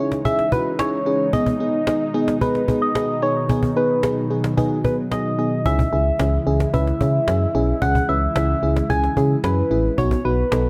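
A driving yet melancholic synth-pop passage in straight 4/4, cut from a longer piece, its harmony moving between C#m and G#m/B before turning to B near the end. A gentle, keys-like FM synth lead carries the melody up front, its struck, decaying notes colored by vibrato and treated with chorus, phaser and delay. Beneath it a mellow FM electric piano supplies soft, round accompaniment with a noise layer, while a swirling, detuned sawtooth pad holds bright, slowly evolving chords through phaser and chorus. A close, woody cajon played with hard hands keeps time throughout, its faint snares adding an acoustic edge. At 5.7 seconds a punchy, dark FM bass enters and becomes the most forward element, lending weight to a mix that sits in light reverb.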